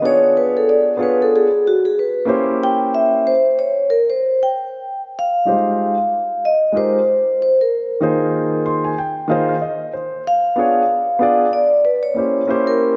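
A wet scoring-stage reverb surrounds this relaxed, cool hip hop excerpt, cut from a longer piece, with a swung sixteenth-note feel in four. A soft-mallet vibraphone sits up front carrying the melody, its metallic, ringing tone shaded by a slow motor vibrato. Alongside it, a dark baby grand piano, also up front, supplies mellow accompaniment with long sustain, and the vibraphone takes a solo over the opening Db7b9 and C7b9 chords. At 5.1 seconds the music moves into a new section built on Fm9 and Ab69/Eb. The piano adds a fill from 8.3 to 10.3 seconds before the harmony returns to Db7b9.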